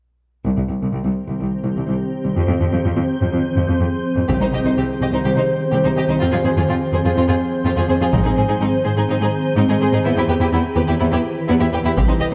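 Brooding and futuristic, this excerpt from a hybrid orchestral and electronic film score in C minor at 125 BPM opens with a rich, up-front chamber cello section on the bass line at 0.5 seconds, joined by a swarming, detuned, granular drone holding sustained chords with its own reverb, before a lush, vibrato-laden symphonic violin section and hard-stick taiko hits arrive at 4.3 seconds to begin a build-up through Cm, Fm, Ab and Em, all set in a moderate scoring-stage reverb.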